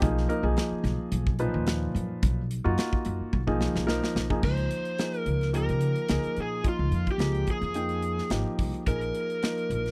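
Slick and soaring, this short cut from a longer electric jazz fusion piece moves at 108 BPM in 4/4 with a light sixteenth-note swing, set in Db lydian. A dark, mellow grand piano carries the accompaniment up front, its intimate tone showing audible action noise and short sustain, while a woody, bright pizzicato upright bass with steel strings anchors the low end. A polished modern drum kit with an airy small-room sound, a medium-tuned snare, a punchy kick, hi-hat and crash sits close in the mix and plays a fill from 3.3 to 4.4 seconds. At 4.4 seconds an overdriven lead guitar through a small cranked amp enters up front with a picked, warm melody as the harmony shifts from Cbmaj7 to Dbmaj9, then lands on Bb5 near the end. The dry, close recording has a 1970s studio character with little reverb.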